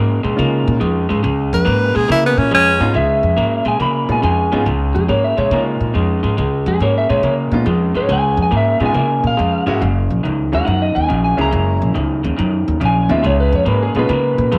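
Electric blues shuffle at 140 BPM in Db mixolydian, soulful and swaggering, where a slightly broken-up, lo-fi guitar riff through a small old amp and a woody, thumpy pizzicato upright bass drive the swing, a clear baby grand piano comps from 0.4 seconds, a breathy, subtoned tenor saxophone with scooped notes takes a brief solo at 1.5 seconds, and a dark, compressed slide guitar carries the lead from 3.0 seconds as the chords move from Db to Gb7 and Db7 in a moderate echo-chamber reverb.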